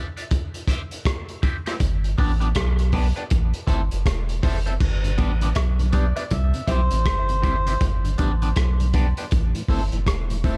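Swung sixteenths on a crunchy, gritty breakbeat kit with a tight kick and dark cymbals set the laid-back, hazy pulse of this dub reggae excerpt, where a twangy, slightly broken-up electric guitar with phaser and dub echo opens the piece, a round, deep sub bass arrives at 1.8 seconds, and a mellow tonewheel organ on slow rotary speaker, a brief background cowbell and a short reedy, nasal melodica phrase at 6.0 seconds, each trailing dub echo, fill out a dark, lightly reverberant mix.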